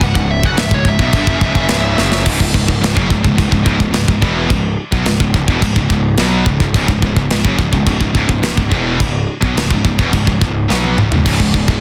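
Epic and dark, this heavy metal excerpt in 4/4 opens with a dark, distorted high-gain lead guitar playing a brief melody, colored by digital delay, which ends at 2.2 seconds. Beneath it, three picked high-gain guitars grind out a riff throughout: a bright distorted pair sits in the background, one of them double-tracked and very quiet, while a third has a scooped tone. A fuzz-driven, picked electric bass adds a round, overdriven low end that comes through direct and amped. Up front, a tight acoustic drum kit in a studio room drives the music with a tight kick, medium-tuned snare, toms, and bright crash and china cymbals, with fills at 2.0 and 10.7 seconds. Light reverb and a dense, heavily limited modern master give the whole track a compact, forceful sound.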